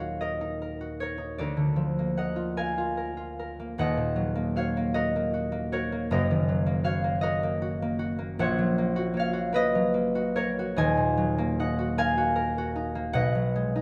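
A rubato 6/8 lilt at roughly 46-54 BPM carries this graceful, dreamy classical fragment from a longer piece for solo concert harp, whose bright, ringing, fingerpicked tone sits up front and close across a span from Eb1 to Ab5, moving from Eb minor into F# major at 8.4 s, all set in a moderate concert hall reverb.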